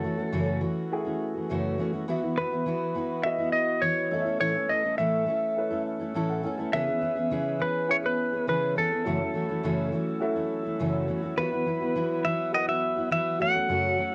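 Carefree and sunny, this 103 BPM pop excerpt sets a twangy, compressed clean lap steel guitar melody up front over a full-bodied fingerpicked steel-string acoustic guitar, a dark, woody upright piano that adds a fill at 5.6 seconds, and a reedy tonewheel organ holding chords through a slow rotary speaker in the background, with cassette tape coloring the guitar, piano and organ, all set in a small, wet room over a F#m7, Esus2, A and C#m7 progression.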